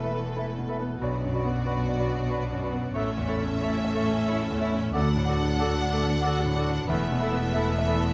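All parts sound together from the start of this short, emotional orchestral film-score excerpt, an uplifting and tender passage in a flexible, rubato three-beat lilt. A rich, focused violin section carries the melody with bowed vibrato. A second, soft-attacked violin line sits in the background, joined by a dark, distant cor anglais, a mellow clarinet and a pure, hollow concert flute. The clear grand piano, vintage in tone with short sustain, is the most prominent voice, spanning a broad range beneath the strings alongside a very quiet, close viola section. A dark French horn section holds sustained chords from a roomy distance, while the double basses and a warm, lush cello section anchor the bass. Light reverb surrounds the ensemble as the harmony moves from Esus4 through Bm, A and D before returning to Esus4 near 6.9 seconds.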